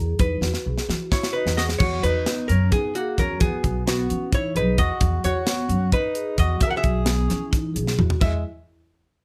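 Light reverb surrounds this bright, intricate progressive piece, cut from a longer work and moving in 7/8 at 262 eighth-note beats per minute in E lydian. An up-front, dark hollow-body archtop guitar carries the melody over woody pizzicato upright bass and a tight, dry, polished funk drum kit with fills at 0.4 and 7.9 seconds, while a mellow vibraphone with soft mallets rings out arpeggios in the background. From 1.1 seconds a breathy, whispered alto saxophone adds an intimate second line with scooped notes over chords that shift between Eadd9, B/E and Emaj9.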